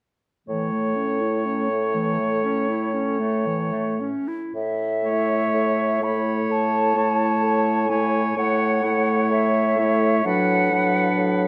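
Classical wind quintet music in a slow romantic vein, this serene, tender passage is cut from a longer piece and moves in a rubato 4/4 at roughly 54-66 BPM in A major. From 0.5 seconds the ensemble settles in: a mellow bassoon holds the bass on a low A with vibrato, a dark French horn with light vibrato fills out the middle of the accompaniment, and a clear clarinet with a smooth top adds further accompaniment beneath a warm oboe with a soft attack and light vibrato carrying a quiet second line. At 4.5 seconds a silver concert flute enters with the melody high above, airy and tongued with vibrato, its metallic sheen sitting at a distance. The harmony rests on A before shifting to Bm7 over an A bass at 10.3 seconds. A moderate concert hall reverb gives the oboe, horn and bassoon a roomy, far-off placement, and all parts continue through to the close at 11.5 seconds.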